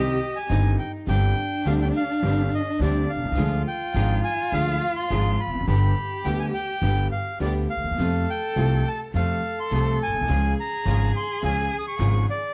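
Close, detailed microphones and a light touch of reverb give this short tango fragment an intimate, present sound, cut from a longer piece. The mood is sultry and dramatic, moving at 104 BPM in 4/4 with a rubato feel, tuned to A4 = 439 Hz. A reedy, bright bandoneon carries the melody, dry and full, while a single bowed cello sings a dark second line beneath it with vibrato, portamento and a smooth top. A clear concert grand piano with a deep bass and a vintage character supplies the accompaniment, and a lush studio string section adds focused, bowed stabs in the background. The pizzicato upright bass sits up front with a woody, steel-strung tone, anchoring a harmony that moves from Cm through Gsus4, Ddim, G and F before landing on Db. Piano, strings and bass drop out at 12.2 seconds, leaving bandoneon and cello to ring on briefly until 12.5 seconds.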